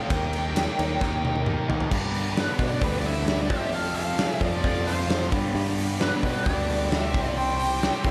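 This short cut from a longer classic rock piece has a big arena sound, set in a moderate recital hall reverb. The mood is driving and sunny: a straight 4/4 at 132 BPM in G mixolydian, moving from Eb to G, Fadd9, G and C. An up-front acoustic drum kit with a punchy kick, a medium-tuned snare and a stone-room ambience plays a fill from 1.0 to 1.9 seconds, as the music moves into its second section. A growly, direct picked bass holds the low end under two overdriven picked guitar riffs in the background, one mellow and one bright, both carrying slapback echo. On top, a dark, bluesy lead guitar sings the melody through wah, distortion and slapback echo. From 2.4 seconds, a fuzz-laden octave-fuzz lead adds a second line. Throughout, a very quiet, shouting tonewheel organ sustains chords with key click, chorus vibrato and a slow rotary speaker.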